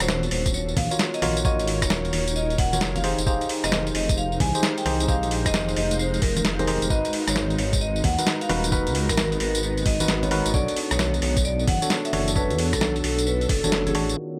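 UK garage in a two-step shuffle at 132 BPM, this moody, late-night excerpt moves through Ebm7, Fm7, Abm7 and Bm7, with a bright, close-miked vibraphone carrying the melody through tape echo while a worn, slightly out-of-tune tine electric piano plays filtered stabs soaked in dub echo. Underneath, a dark detuned saw bass rumbles with sidechain pumping, and a gritty, pitched-down boom bap drum kit sits up front with congas, tambourine, rim click, filtered hats and a medium-tuned snare, joined at 0.5 seconds by a thumpy, tape-warm electronic kick. A cloudy granular pad drifts in the background with its own reverb and pumping, and the whole mix carries light reverb and a low-pass filter.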